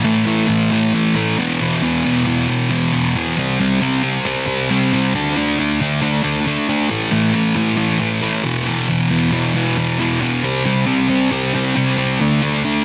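Rock in a dark, angsty mood, this short cut from a longer piece moves at 136 BPM in a straight 4/4 feel. A lone fuzz guitar carries the whole 12.8 seconds as the solo part, picked and double-tracked, sitting up front with a warm, distorted tone and a trail of digital delay. Its range spans E2 to D4, and it works through power chords on A, E, C and D, with a short opening section giving way to a longer second one at 3.4 seconds where the same chord cycle returns. The guitar sits in light reverb and a digital ambience, and the master is dense and heavily limited in a modern style.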